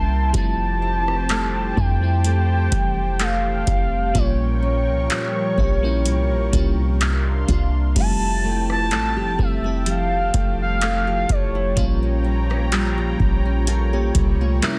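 A dense, heavily limited and nearly dry mix carries this dreamy, romantic contemporary R&B fragment at 63 BPM in F major with a lightly swung 16th feel: a smooth, wave-folded portamento lead with chorus, digital delay and vibrato sings the melody until 12.3 seconds over a lush FM electric piano with chorus and phaser, a warbling vintage analog pad, a fingerpicked, full-bodied nylon-string guitar playing arpeggios, a deep, boomy 808-style bass up front, and a booming analog drum machine entering at 0.3 seconds with a deep kick, metallic hats, handclaps, rim clicks and crash cymbal, as the harmony moves through Fmaj9, Bbm6 and C9sus4.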